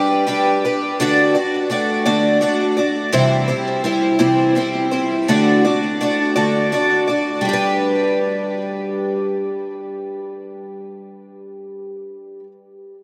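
Jangly and warm, this short rock fragment, cut from a longer piece, drifts along at 56 BPM in a straight 6/8 feel, centred in G major. A lone picked twelve-string acoustic guitar carries the whole 12.5 seconds, its octave-doubled strings shimmering with a bright, fresh-strung sparkle and a boxy, parlour-sized body. Sitting up front, it carries a subtle chorus and delay, while a huge ambient reverb with a 6.5-second tail soaks the mix in a dreamy haze. The harmony moves from G to D, then C, back to D, and returns to G at 7.5 seconds as a second section begins and runs to 11.8 seconds.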